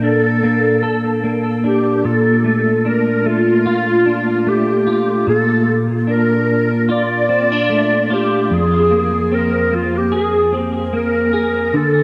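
This indie pop fragment sways at 74 BPM in 4/4, with a light swing on the sixteenth notes that gives its slow pulse an easy, loping feel. Set in B-flat major, the mood is sunny and nostalgic. A clarinet carries the melody in a classical style, its mellow tone sitting up front and treated with ensemble chorus and tape echo. Beneath it, a clean electric guitar plays fingered, compressed accompaniment, also close in the mix, colored by chorus, vibrato and tape echo. The harmony rests on Bbmaj7 before shifting to Fmadd11 at 8.5 seconds. A moderate spring reverb and an echo-heavy mix lend the short passage a dreamy, reflective haze.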